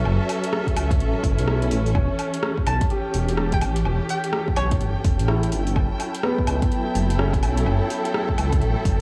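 Future garage at 126 BPM with a 62% swing on the sixteenths, this ghostly, melancholic excerpt moves from F#m7 to Em6 and back as a dark, rumbling detuned saw bass sits up front beneath lush, vibrato-laden strings and a woody background upright piano coated in 12-bit sampler grit and tape echo, all pumping to the sidechain, while overdriven deep house drums with metallic hats, rim clicks and woodblock are joined by a deep kick at 0.7 seconds, a faint electronic swell appears at 1.2 seconds, and from 2.6 seconds an airy, wind-like noise texture drifts in, followed at 2.7 seconds by a hollow, bouncy square pluck with chorus and analog delay, all over a dry, gritty mix.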